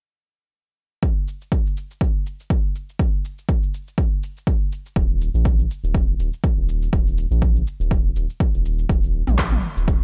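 Hypnotic and earthy, this afro house excerpt moves at 122 BPM in 4/4 with a 16th-note swing, opening at 1.0 seconds on a punchy, overdriven electronic kick up front and a layered deep house kit of cabasa, handclaps and toms carrying its own grit further back. At 5.0 seconds a round, dark analog bass enters, sitting low between Eb1 and Bb1 with a fast attack, sustained tone and sidechain pumping. The dry mix has little reverb, and a brief new section arrives at 8.9 seconds before the cut.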